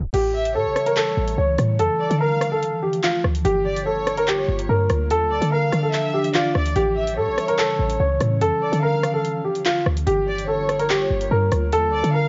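A home cassette recording with light reverb, a dulled top end and a tape stop, this cut from a longer half-time drill track feels menacing and cold. A dark, up-front baby grand piano carries the melody over a punchy, tight 808-style bass and an electronic drill kit with a woody snare, metallic hi-hats, handclaps, rim clicks and crash cymbal. From 0.5 seconds an ethereal, detuned sawtooth pad with ensemble chorus and built-in reverb sustains chords cycling through A7, Dmadd9 and Gm7, while a lush, bowed violin section with vibrato and tape echo adds a high second line from 0.3 seconds.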